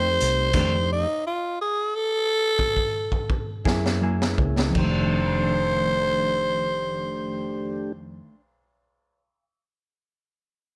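A dry recording catches a soulful, swaggering slow blues in 12/8, cut from a longer piece, as it slows through a stop that runs from 0.5 to 3.7 seconds and a drum fill that carries it into the next section at 4.8 seconds. A raspy, breathy tenor saxophone carries the melody up front with scooped notes, light vibrato and a jazz growl, over a dark, clean electric guitar with tremolo, a soft, flute-like tonewheel organ with key click through a slow rotary speaker, and a round, foam-muted fingered electric bass. The raw garage drum kit, with its high-tuned snare, punchy kick, pumping small-room sound and saturated, rolled-off top, drops out at 4.9 seconds as the harmony moves from F9 and F13 to Gb9 and back to F13.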